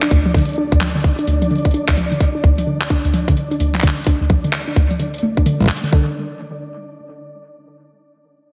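IDM with an intricate, cerebral mood, heard as a short cut from a longer piece in a swung 4/4. A warbling, dusty pluck carries the arpeggios from the start, its detuned square and sawtooth tones softened by chorus and analog delay and sitting up front. Beneath it, a gritty, pitched-up jungle sampler-style kit of handclaps and hi-hat plays from the start, compressed and coloured by small room ambience and delay, and a tight, tape-warm electronic kick enters at 0.1 seconds. A flickering, granular texture with a slow attack and long release hovers higher, its detuned triangle tones wrapped in their own reverb. The dreamy mix is soaked in a lush hall reverb, with the pluck ringing on until 6.1 seconds as a new section begins.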